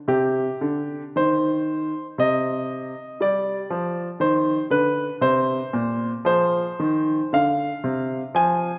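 A moderate concert hall reverb surrounds a clear, up-front grand piano, giving this short cut from a longer piece a present, solemn sound. It is a baroque-style classical suite movement in C minor and 3/4 time, moving at a slow 54 to 62 BPM with a rubato feel that keeps it flowing. The solo piano plays from 0.1 to 8.8 seconds, spanning Bb2 to Ab5. The harmony starts on C minor, passes through a G5 chord at 3.2 seconds and a Bbsus2, then settles on F minor at 6.2 seconds. The result is a brief, solemn and flowing passage, its unhurried pace carried by the hall's 2.0-second decay.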